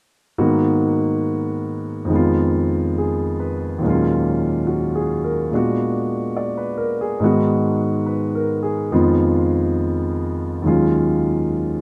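Swung eighth notes in a slow 4/4 give this short jazz fragment an unhurried, smoky lilt. A lone concert grand piano plays an accompaniment role from 0.4 to 11.8 seconds, ranging from Eb2 up to D5. The mood is melancholic, built on a minor-leaning progression that moves from Abm9 through Fm7b5 and Ebm11 to a tense Bb7b9b13, then cycles back through Abm7, Fm7b5 and Ebm11. The piano's tone is warm and open, with a deep bass register and a close, up-front presence. A light reverb adds a touch of space around the instrument, and the passage sounds lifted from a longer piece.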